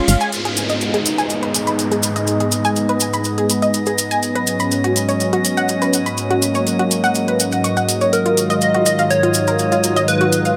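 Over a straight 4/4 pulse at 123 BPM, an overdriven, metallic electronic hi-hat and a grainy, mellow cabasa drive this emotional, dreamy progressive house excerpt in G# dorian, moving from G#m through Bsus2/G# to D#madd9/G#. A thick, warbling unison pad sits up front with chorus, while a round analog pluck spins arpeggios through chorus and delay, a glassy texture of drifting overtones enters at 1.4 s, and a downlifter sweeps through early on. At 8.1 s a punchy, catchy unison lead takes the melody with phaser and tape echo, all set in light reverb.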